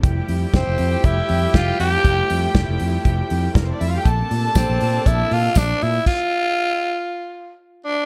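Disco in a danceable, celebratory mood, built on Fmaj9 and Bbmaj9 chords, with a dry, damped 70s drum kit and a fingered electric bass up front, a reedy, gut-string violin section on a second line and a lush, distant string section holding sustained chords in the background. A growling tenor saxophone carries the raspy, breathy melody with slapback echo from 0.6 seconds, while a jingly tambourine adds brief colour near 4.6 seconds. At 6.1 seconds the band stops and the gritty saxophone plays on.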